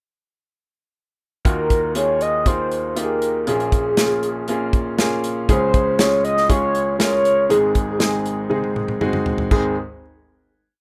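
A rough home-demo sound with moderate studio reverb frames this short, complete piano-driven pop piece in Ab mixolydian, moving at 119 BPM in a straight 4/4 with a hopeful, anthemic mood. A clear, woody upright piano enters at 1.4 seconds, up front with long sustain and plate reverb, playing close-voiced chords in quarter notes dressed with grace notes, from deep bass up into the middle register. Almost at once a mellow, horn-like synth lead carries a motif-based melody in song-like phrases, its round sawtooth-and-triangle tone shaped by a filter sweep, soft attack, vibrato, chorus and plate reverb. A polished acoustic drum kit, airy yet punchy with a medium-tuned snare, drives a pop backbeat with kick, snare, hi-hat, toms and crash. The chords pass through Ebmadd9, Bbm7, Db and Ab, a drum fill arrives at 8.5 seconds, and the piece settles onto a final chord at 9.5 seconds.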